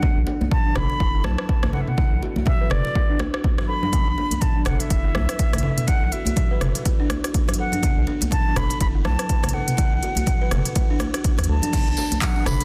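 A swung 4/4 afro house groove drives this hypnotic excerpt, anchored by a punchy, up-front electronic kick and a produced afro-pop kit with smooth hi-hats, handclaps, rim clicks, toms, crash and a softly clipped snare. Distant congas and a deep, hard-handed djembe sit in the background. A round, dark analog bass with sidechain pumping enters at 0.2 seconds beneath a buzzing, woody kalimba, whose arpeggios carry a filter sweep, pumping and dub echo, while a metal concert flute with vibrato sings an airy melody with dub echo of its own, and a bright, jingly tambourine joins at 11.7 seconds in a dense, heavily limited, dry mix.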